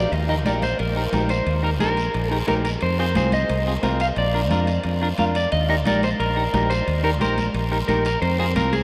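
Awash in a huge ambient reverb that places everything in a vast, echoing space, this sunny, joyful cumbia excerpt opens with a dark, clean, picked electric guitar taking the lead up front, alongside a round fingered electric bass moving through Eb, Fm and Bb. A dark, hollow-body semi-hollow electric guitar, played fingered, fills in the accompaniment from 0.3 seconds. Beneath them sit raspy, distant guiro, warm high-tuned congas in the background and very quiet, ringing metal-shell timbales.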